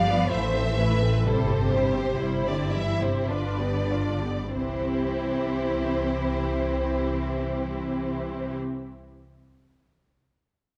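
Serene and tender, this slow, rubato romantic movement for string orchestra in 3/4 and C major eases to a slower pace over its first 4.5 seconds, with focused violins singing the melody above a smooth second violin line, expressive violas with portamento, soft-attack cellos, and rich, up-front double basses, all bowed with vibrato in a lush blend on a moderately reverberant scoring stage as the harmony moves from Am through C/G and G7 to settle on C at 4.5 seconds.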